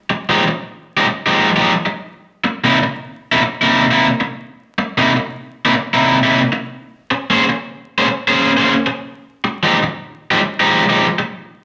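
A swung 4/4 pulse at 103 BPM carries this mournful, brooding minor blues in F minor, cut from a longer piece. A single cranked stack guitar takes the solo, bright and picked, its overdriven tone sitting up front and ranging from C3 to C5 between 0.1 and 11.2 seconds. The harmony moves from Fm9 to C7#9, then to Bbm9 at 6.9 seconds before returning to Fm9. A moderate large-studio reverb gives the guitar a sense of space, while a layer of vinyl crackle lends the recording a dusty, aged surface.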